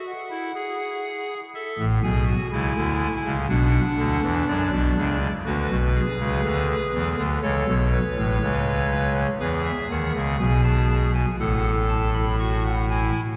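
A pipe organ voiced on a clarinet reed stop leads this short cut from a longer piece, its hollow, chiffy tone sitting up front with tremulant and baroque voicing. The music is a classical, baroque-style three-part fugue in A major, moving at a stately 61 BPM in a straight 4/4 with a joyful character. The organ plays solo from the start to 13.2 seconds, spanning from A1 up to C#6. The harmony moves from E through A, B minor and E7, returning to A and E before settling on F-sharp minor over A. A cathedral reverb with a long decay of 5.1 seconds surrounds the playing, and the overall production is dark and warm.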